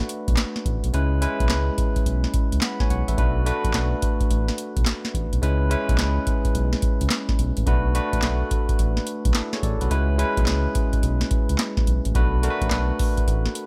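Bouncy and confident, this new jack swing R&B excerpt moves at 107 BPM on swung 16ths in B dorian, driven by a booming analog drum machine with a deep kick, crisp snare, and metallic hi-hats and handclaps in a short room, joined at 0.3 seconds by a round, dark analog bass, while a barky, bell-like tine electric piano with subtle chorus sits up front as the harmony rocks between Bm7 and C#m7 inside a digital ambience.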